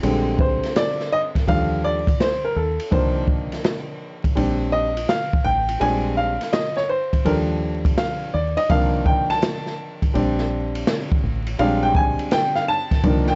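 Nocturnal and smoky, this jazz-hop hip hop excerpt at 83 BPM in 4/4 with a swung sixteenth feel features a clear, woody upright piano with short sustain soloing up front over Bb13, Ebmaj9#11, Cm11 and Bb69 chords, supported by a deep, round, foam-muted fingered electric bass and a smooth, rolled-off open jazz kit of boomy kick, medium-tuned snare, hi-hat and dark ride cymbal in a small room, all captured as a dry, gritty hardware recording with transformer saturation and vinyl crackle.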